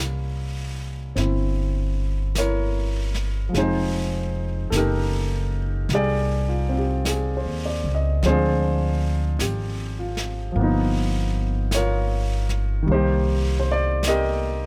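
A dry, close and detailed recording frames this slow, melancholic and smoky jazz ballad in C minor, cut from a longer piece and moving at 51 BPM with a lazy swing feel. A smooth, vintage-toned grand piano sits up front comping through C7b9, Fm9, Dm7b5 and G7alt before settling on Cm7, while a woody, growly pizzicato upright bass holds the low end beside it. At 1.2 seconds, a softly brushed jazz kit of snare and hi-hat slips in further back, adding a hushed small-room texture.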